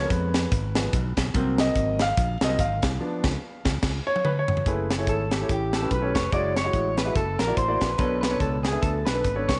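A swung 4/4 groove drives this uptempo gospel passage, taken from a longer piece and carrying a soulful, fervent mood. A clear grand piano takes the spotlight for the first 4.7 seconds, voicing rich extended chords over a growly, punchy fingered electric bass and a crisp, polished fusion drum kit with a high-tuned snare and tight kick sitting up front. The band hits a shared accent from 3.0 seconds, and a drum fill carries the music into the second section at 4.7 seconds, where the harmony turns to minor eleventh, ninth and altered dominant colours. At 5.1 seconds a mellow, soft-attacked clarinet with jazz vibrato and a clean, picked electric guitar bathed in spring reverb enter together, sharing the melody in the same register. The whole band sits in a moderate echo-chamber reverb, with a smooth top end that keeps the bright bass and airy cymbals from turning harsh.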